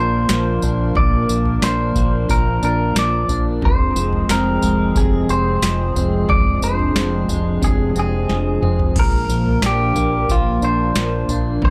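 A twangy, clean electric guitar melody with tape echo opens this blissful, dreamy dream pop excerpt at 90 BPM in Bb mixolydian, over a hollow, flute-like chorused pad, slightly broken-up picked arpeggios from a guitar through a small old amp drenched in lush chorus and tape echo, and a dark, round fingered bass, with a booming, overdriven analog drum machine arriving up front at 0.3 s with a deep kick and crisp snare, then playing a fill at 8.3 s as the chords, having moved from Bb to Fm at 3.6 s, return to Bb at 9.0 s, inside a dry, gritty recording with digital ambience and transformer saturation.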